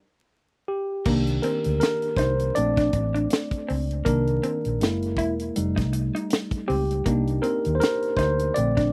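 A worn, slightly out-of-tune tine electric piano leads this introspective, sultry neo-soul R&B clip, sounding clean and direct at the front of the mix as it takes a solo from 1.1 seconds. It first appears at 0.7 seconds during a brief stop. At 1.1 seconds a tight funk drum kit, a vintage muted fingered electric bass and an electric guitar through a small old amp come in together. The drums have a natural, small-room character with a high-tuned snare, tight kick, hi-hat and crash, while the foam-muted bass is dark, round and punchy; both sit up front. The guitar plays a second line in a warm, slightly broken-up, picked and compressed lo-fi tone, lower in the balance. The harmony moves through Cm9, Bbmaj9, F#9 and F9 over a lightly swung sixteenth-note feel, and the dry sound carries a layer of vinyl crackle.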